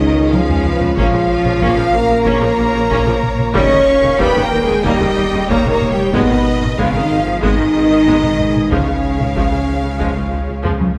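Cinematic hybrid orchestral and electronic film score, vast and brooding, cut from a longer piece and moving through Db, Bbm, Eb7 and Abm before returning to Db. Lush bowed violin sections carry a smooth, vibrato-rich melody and an expressive second line over an intense viola accompaniment in the background, while a tight, mellow French horn section and a very quiet, glassy, ethereal FM pad hold sustained chords. Focused cellos, a soft-attack tuba, distant double basses and a deep sine-and-triangle sub bass with octave build the low end, and a compressed, saturated taiko ensemble struck with heavy sticks enters at 0.3 s with fills there and at 10.7 s, the whole set in a wet scoring-stage reverb.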